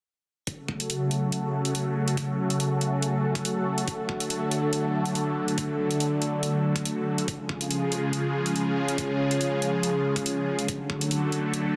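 Aggressive and heavy, this half-time wobble dubstep clip sets a lush, detuned supersaw pad, sidechain-pumping under a phaser and a filter sweep, over knocking overdriven electronic kick and bright, gritty electronic hi-hats up front, while a dark, warbling tape-like pad with chorus and nostalgic lo-fi haze joins at 1.5 s, all bathed in a lush hall reverb and a dense, heavily limited master as the chords move from F#m through D and C# and back to D.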